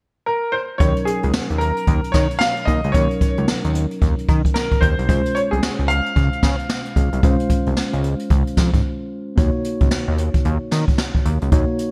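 A clear concert grand piano opens at 0.3 s with a lush-chorused, digitally delayed melody before this punchy, slick new jack swing excerpt settles into a 112 BPM groove in Eb dorian, swung on the sixteenths. From 0.8 s a fat, detuned analog bass with a wave-folded filter sweep sits up front beside a roomy brush kit with a boomy kick, a high-tuned snare and gated reverb, while a mellow tine electric piano comps over Ebm7 and Dbmaj7. The grand piano drops out at 8.8 s for a short break, and the bright 1980s-style digital production carries the band back onto Ebm7 in a new section.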